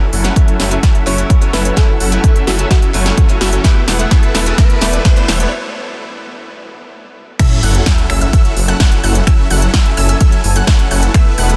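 Opening this cut from a longer festival progressive house track in F# minor at 128 BPM, gritty, filtered supersaw chords pump alongside a boxy picked acoustic archtop guitar with tape echo and a big-room dance drum kit fill of crisp hats, snaps and a punchy snare, joined by an overdriven electronic kick, a thick chorused detuned saw bass up front, a very quiet phased unison pad and a brief, sparkling bell-like FM electric piano melody, as a faint riser and sub drop carry the anthemic, euphoric build through a break at 5.5 seconds into a drop at 7.4 seconds, where a bright detuned unison pluck adds high arpeggios in a dry, dense, heavily limited mix.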